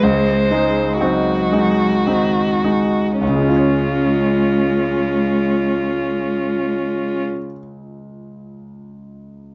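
Solemn and yearning, this slow romantic movement for piano quartet drifts in 3/4 at 51-62 BPM with a rubato feel, slowing through its opening 3.2 seconds as a G#7 over C# gives way to C#. A rich, expressive violin sings the melody with vibrato, soft attacks and portamento, while a focused cello carries a second line further back, and a clear, intense viola joins the accompaniment at 1.0 seconds. The bright, brilliant grand piano sits up front and rings on alone until 9.5 seconds, all in a dark production with light reverb, cut from a longer piece.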